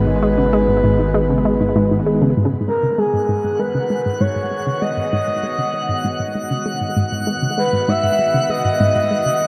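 A steady, straight 4/4 pulse at 98 BPM drives this expansive, hypnotic stretch of sequencer-driven ambient space music in G# minor, cut from a longer piece and resting on a G#m7 chord, where a round, nasal analog pluck riff with chorus and delay repeats beneath a breathy, flute-like synth lead that carries the melody up front with vibrato, portamento and lush chorus and delay. A sweeping, resonant pad holds airy, detuned sustained chords with chorus, while a deep sine sub bass sounds only until 2.3 seconds, and a twinkling granular texture with an octave-up shimmer and its own reverb enters at 3.5 seconds. The whole mix sits in a huge, wet reverb with a long tail. A filter sweep moves across the arpeggiated synth throughout, and a fade-in on the analog pad marks the shift into the second section at 2.4 seconds.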